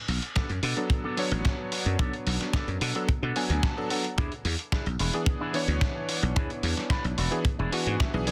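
A groovy, sleek nu-disco excerpt in B dorian at 110 BPM opens with a growly, punchy thumbed slap bass with tube saturation and sidechain pumping, a twangy envelope-filtered guitar riff with subtle chorus and delay, and a gritty, sampler-style soul drum kit of hi-hat and snare. A tight, up-front acoustic kick joins at 0.4 seconds, and a clangy, vintage electric grand piano with sidechain pumping and delay follows at 0.8 seconds. Clean guitar fills arrive at 3.4 and 7.5 seconds, and the chords move from Bm7 to E7 at 4.2 seconds, all in a small, lightly reverberant room under a dense, heavily limited master.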